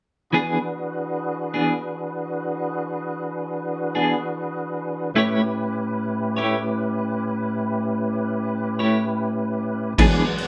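A slow 12/8 blues at 50 BPM in E mixolydian, this soulful, gritty excerpt opens with a clean, compressed, picked electric guitar carrying tremolo and a clear tonewheel organ with key click, slow rotary speaker and chorus vibrato holding sustained chords over E7 and then A7 at 5.2 s, before a saturated garage drum kit with a punchy kick, a worn, slightly detuned upright piano and a veiled, bowed cello playing the bass in the background all enter at 10.0 s, the whole band playing live in one room with wet reverb.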